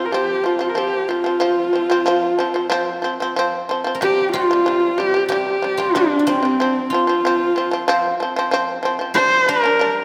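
Drenched in the long, wet reverb of a concert hall, this fragment of Mongolian folk music feels vast and galloping, moving in a straight four-beat pulse. A husky horsehead fiddle, bowed up front by a single player, carries the expressive melody with vibrato and portamento, while a buzzing, fretless shamisen plucks percussive arpeggios beneath it. At 3.9 seconds a silvery, ringing guzheng enters with a second line as the music moves into a new passage.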